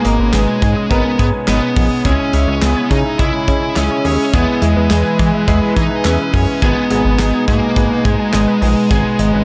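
A dark, overdriven electric lead guitar carries the melody up front in this driving, nocturnal synth-pop excerpt at 105 BPM in G# minor, backed by a punchy, polished studio drum kit with handclaps, a glossy chorused synth bass, an intimate concert grand piano with audible action noise, a swirling phased analog pad, and a lo-fi, detuned pluck playing arpeggios in the background, all set in an echo-heavy mix with spring reverb as the chords move from G#m through C#m and E back to G#m.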